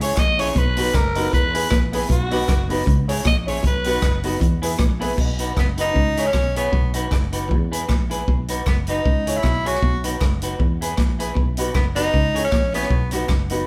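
A raspy, gritty alto saxophone leads this joyful, upbeat ska excerpt with a slapback-echoed solo over the opening 5.2 seconds, before an edgy tenor saxophone takes up the melody at 5.6 seconds. Beneath them a swinging big-band drum kit with a punchy kick drives the groove alongside a round, foam-muted fingered bass, a hollow-body semi-hollow guitar with slapback echo, a twangy clean guitar riff, and crisp group handclaps. A dark, woody upright piano adds stabs in the background, and the whole band sounds as if it is playing live in a stone room.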